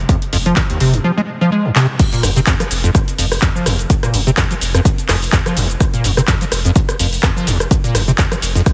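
Acid house at 126 BPM with a 16th-note swing, trippy and raw, cut from a longer piece. A squelchy, hollow square-wave acid bass with a resonant filter sweep, tube saturation and ensemble chorus carries the riff up front between Eb2 and Ab3, over a deep, round sine sub bass pumping from the sidechain and a punchy electronic kick. An analog drum machine re-recorded in a small room adds crash, handclaps, hi-hat, rim click and shaker, with a drum fill at 1.8 seconds leading into the drop at 2.0 seconds, all under light reverb and a heavily compressed radio-style sound.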